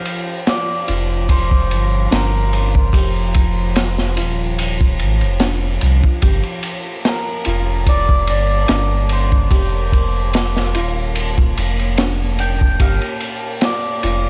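A crunchy breakbeat kit of kick, snare and dark ride cymbal sets a slow, lightly swung 73 BPM groove in 4/4, sitting up front with a saturated, gritty edge and a rolled-off top. This is a smoky, melancholic trip hop passage in G minor, cut from a longer piece and tuned slightly flat. A round, sine-like sub bass joins at 0.9 seconds, deep and up front beneath the beat. Over it, a hammered cimbalom carries the melody with a shimmering, ringing tone, trailed by dub echo and tape color. Further back, a felt-muted upright piano plays soft, intimate arpeggios with vintage sampler grit and analog delay, while a moody, evolving pad holds detuned sustained chords washed in chorus and reverb. The harmony moves through G5, F7(no3), Gm7 and F7 before returning to Gm7, all with the dry feel of a home cassette recording.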